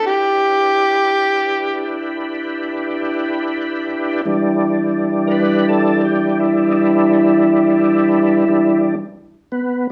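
A slow 12/8 blues pulse sets a mournful, smoky mood in this short cut from a longer piece, resting on an Em7 chord. An amplified, gritty harmonica sits up front with light vibrato, tongue slaps and scooped notes in a jazz style, though its melody stops at 2.1 seconds. The thick, overdriven tonewheel organ sustains chords through a slow rotary speaker and chorus vibrato, taking the solo from 4.3 seconds onward, all framed by a small club room's reverb.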